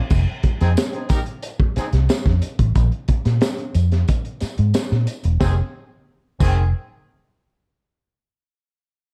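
A dark, warm small-room sound opens this sly, driving funk excerpt in F minor at 90 BPM, where a gritty, saturated breakbeat kit with a high-tuned snare and tight kick sits up front beside a round, punchy, foam-muted fingered electric bass. A jingly tambourine rides in the background, and from 0.6 s a clear, distant horn section with vibrato adds a roomy second line. The harmony moves from F5 to Bb5 at 2.8 s and back to F5 at 5.4 s.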